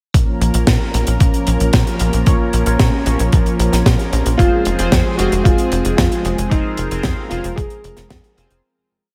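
A gritty, thumpy four-on-the-floor kick sits up front in this melodramatic, bittersweet italo disco piece. Alongside it from the start play a punchy, saturated sixteenth-note sequencer bass, a lush, thick chorused unison pad holding chords, and a dry, airy funk kit with a high-tuned snare and closed hi-hat in gated reverb. A glossy, detuned polysynth adds syncopated chord pushes with phaser, tape colour and delay from 2.3 s, and a dark, intimate grand piano with audible action noise plays a motif-based melody from 4.4 s, all within a brief piece that fades out from 5.8 s.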